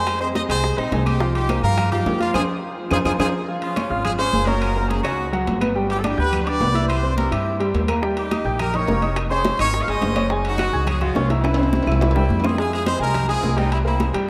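Drenched in the long echo of a vast, cathedral-like space, this passionate, driving salsa fragment puts a brilliant, punchy horn section with light vibrato up front on the melody beside a dark, thumpy pizzicato upright bass, while a clear grand piano accompanies. Bright, hard-handed congas and ringing metal-shell timbales sit in the background, very quiet soft-handed bongos drop out between 3.3 and 8.0 seconds, and distant, woody claves stop at 12.6 seconds, with a band accent and drum fill punctuating the opening phrase.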